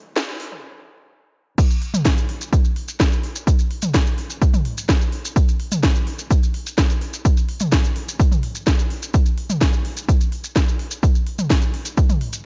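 Set in a digital ambience whose top end is cut off at 7.6 kHz, this driving, hypnotic techno cut from a longer piece runs at 127 BPM in a straight 4/4. An electronic kick drum with a dry, punchy analog character and a high-pass filter sits up front beside a layered, overdriven techno drum kit of crash cymbal, smooth hi-hats, cracking snare and toms, both arriving at 0.2 seconds. The opening is a brief build-up carried by a filter sweep, with a stop from 0.6 seconds that holds the tension until the drop at 1.6 seconds. At that drop, close, grainy maracas join with a mellow acoustic texture, adding a softer layer beneath the produced electronic drums. From there the groove rolls on steadily to the end, hard-hitting and trance-like.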